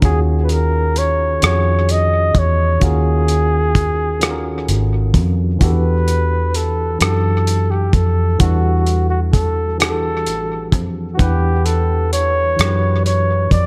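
Echo-heavy, this yearning, sultry slow six-eight R&B fragment sets a mellow flugelhorn melody with vibrato up front over a worn, slightly out-of-tune tine electric piano, both bathed in tape echo, while a dark, round, foam-muted fingered electric bass and a muffled, gritty cloth-damped drum kit of hi-hat, tight kick and rim click carry the groove as the harmony moves from Ebm11 to Em11 at 5.6 seconds.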